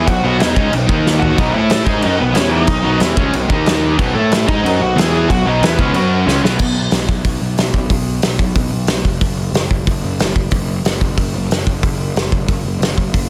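A distorted, bluesy lead guitar leads this rowdy, rebellious punk rock excerpt in B mixolydian at 184 BPM, riding over three picked rhythm guitars: two bright overdriven ones sitting in the background and a dark, double-tracked fuzz guitar tucked very quietly beneath them. A round, punchy fuzz bass and a roomy, up-front drum kit with dark cymbals, a tight kick and a rolled-off top drive the straight 4/4 pulse, with short drum fills marking the phrases. The lead falls silent at 5.9 seconds and the rhythm guitars drop out at 6.6 seconds, leaving bass and drums to carry on alone until 13.3 seconds under a light reverb and a dense, heavily limited modern master.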